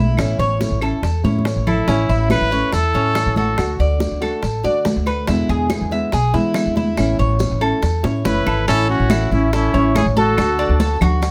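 Lightly reverberant and sunny, this excerpt of Cuban son and guajira rests on a dark, thumpy pizzicato upright bass up front, joined by a full-bodied fingerpicked nylon-string guitar and the metallic, double-stringed arpeggios of a Cuban tres. Bright congas, round low-tuned bongos, woody claves and grainy, distant maracas sit in the background, with a couple of drum fills. A vibrato-laden trumpet carries the solo melody from 1.7 seconds and returns at 8.3 seconds, when a pure, crisp-attacked silver concert flute adds a second line.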